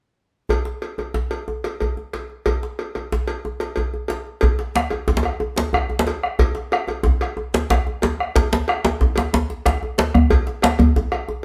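West African traditional drum ensemble music, driving and festive, in 12/8 at 122 BPM, cut from a longer piece and played live in one room with moderate studio reverb. A metallic cowbell and a tight, cracking djembe, close and dry with soft hands, open the excerpt from 0.5 seconds. A deep, dark bombo joins up front at 4.4 seconds, followed at 4.8 seconds by a second djembe, warm and deep, that sits close and forward in the mix.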